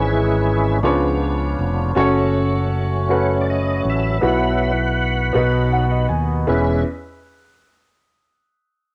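A slow, jubilant gospel excerpt in 6/8 at 53 BPM in E major opens with a lightly overdriven tonewheel organ soloing through a slow rotary speaker and chorus vibrato over clear, open concert grand piano and a direct, amped fingered electric bass, the piano adding a fill from 5.3 seconds as the chords move from C#m/G# through C#7b9, F#m and Bsus4 to B before resolving on E6 at 6.5 seconds, all captured with light small-room reverb on a cassette home recording.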